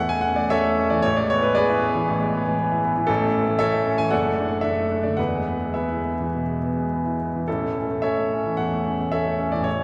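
A clear baby grand piano opens on an A major chord, playing alone for the full 9.8 seconds of this short excerpt from a longer romantic character piece. The mood is lyrical and hopeful, moving in 4/4 with a flexible, rubato feel that drifts between 102 and 119 BPM. The harmony moves from A through E7/A, back to A, then to D/F# at 4.1 seconds and E before settling on A again at 7.5 seconds. The piano spans from F#1 up to G#5, and its tone is natural and intimate, with long sustain and the audible noise of its action close at hand. A wet church reverb with a 3.6-second decay surrounds the instrument, and the listener seems placed further back in that resonant room.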